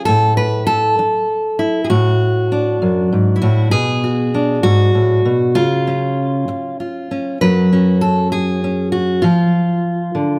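In a straight 6/8 lilt at 66 dotted-quarter beats per minute, this haunting, melancholic folk fragment from a longer piece features a solo fingerpicked steel-string dreadnought acoustic guitar, full-bodied and up front, tuned slightly flat to A4 = 437 Hz, moving from A5 through D/A, Bm and C# before turning at 7.4 seconds to F#sus2 and Dm, all set in a moderate recital-hall reverb.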